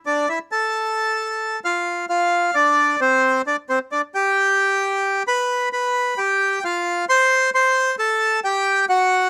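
Tango for solo bandoneon, dramatic and passionate, moving at 133 BPM in 4/4 with a rubato feel across this brief nine-second excerpt. The reedy, bright bandoneon sits up front, ranging from C4 to C6 over chords that run from A5 through Dm7, C5, G and G7 before settling on Am. Light reverb surrounds the instrument in a rough home demo mix.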